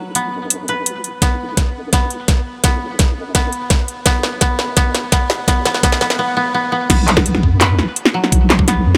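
Half-time drum and bass at 169 BPM, spacious and heavy, cut from a longer piece: a woody, fingerpicked koto plays tape-echoed arpeggios over a deep, dark wobble bass with chorus and tube saturation, all set in a huge ambient reverb. Drums enter at 0.2 seconds with a cracking snare, metallic hats, handclaps and crash, joined at 1.2 seconds by a knocking electronic kick, both up front and tape-toned. A build-up carrying a long drum fill gives way to the drop at 6.9 seconds.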